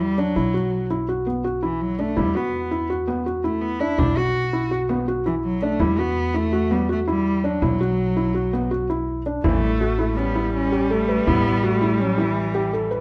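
A rich, bowed cello carries the melody with smooth vibrato in this urgent, pensive contemporary chamber piece, cut from a longer work and moving at 165 BPM in 5/4. Around it, a felt-muted upright piano plays soft, intimate arpeggios with audible action noise, a woody pizzicato upright bass on gut strings holds the low end, and a deep frame drum sits distant in the background from 2.2 seconds. At 9.4 seconds an expressive viola enters with a second line shaped by portamento, heard in a moderate recital hall reverb with a dark production.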